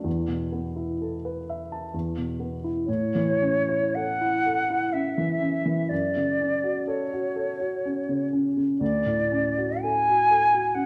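A pure, mellow silver flute enters at 2.9 seconds with a tongued, vibrato-rich melody that sits up front and feels expressive and tender, after a dark, mellow baby grand piano opens this romantic classical excerpt alone over suspended E harmony. In 3/4 at 54-66 BPM with free rubato, the piano's short-sustained accompaniment moves through A major, F#m and Dmaj7 beneath the flute. A wet recital hall reverb and a dark, warm production give the duo a warm glow.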